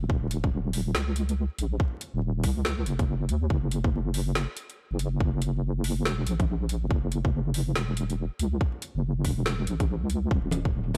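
Vinyl crackle hangs over this brooding, heavy deep dubstep excerpt, which moves in a swung half-time feel. A dark, wobbling bass built from square and sine tones, compressed and treated with chorus, sits up front from the start, joined by a tight, tape-warm electronic kick and a garage kit of woody snare and metallic hi-hats, both drum parts set in a small room reverb. At 10.5 seconds, ringing acoustic congas enter up front.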